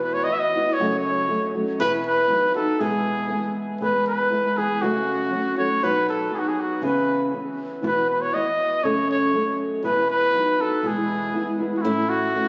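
A warm, close-miked trumpet with light vibrato and a touch of tape echo leads this festive, proud mariachi folk fragment in a classical style, carried over a dark, thumb-plucked acoustic flamenco guitar, both sitting up front in a moderate recital-hall reverb that carries the compressed, phone-in-the-room character of the recording.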